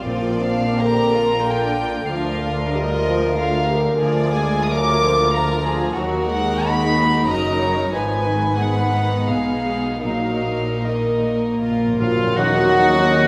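A yearning, solemn slow romantic orchestral passage in 3/4 with a rubato feel opens on softly bowed sul tasto strings: floating, up-front violins carry the melody over a clear second violin line, woody violas, intimate cellos and rich double basses, with a ringing background harp in arpeggios and background timpani that return for a fill near 11.6 seconds, before a bright oboe, dark French horns and very quiet trumpet stabs enter at 12.0 seconds, joined at 12.4 seconds by clarinet, a silver flute, bassoon and a faint tam-tam in an accent, all within a wet scoring-stage reverb.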